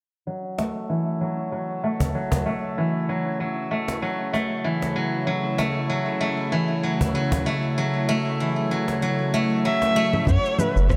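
Mystical and earthy, this organic downtempo excerpt moves at 96 BPM in F# minor with a light swing. A silvery, fingerpicked steel-string zither rings out arpeggios over an F#m7 chord from 0.3 seconds, with a filter sweep, delay and shimmer reverb, joined by a snappy acoustic cajon and a tense, sawtooth-edged drone of sustained chords carrying vibrato, sidechain pumping and shimmer reverb. Near the close a dark, boxy kamancheh enters at 9.7 seconds with an expressive bowed melody full of portamento. Overdriven electronic congas, shaker and rim click follow at 10.1 seconds, and at 10.3 seconds a round, deep analog bass with tube saturation arrives alongside a soft overdriven electronic kick, all set in a moderate scoring-stage reverb.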